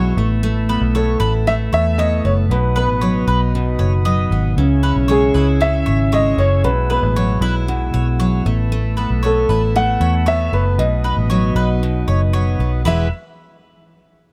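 Close, detailed miking with little reverb gives this heartfelt, easy-going acoustic pop excerpt a dry, intimate sound, moving in a straight 4/4 at 116 BPM in E major. A dark, mellow upright piano carries the melody, with audible action noise and long sustain, over a full-bodied picked dreadnought acoustic guitar, woody mandolin arpeggios and a smooth tonewheel organ holding chords through a slow rotary speaker. A round, foam-muted vintage fingered electric bass sits up front as the chords cycle through Asus2, B, C#m and Eadd9 before arriving on E at 12.8 seconds.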